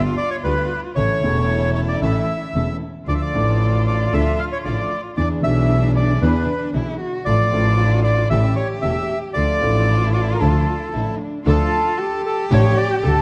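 Tango in a tense, sultry rubato, where a reedy, smooth bandoneon carries the melody up front over an expressive, dark cello second line with portamento and vibrato, a vintage baby grand piano accompaniment, very quiet, lush symphonic string stabs and a biting, intense bowed double bass played close, all set in a moderate concert hall reverb.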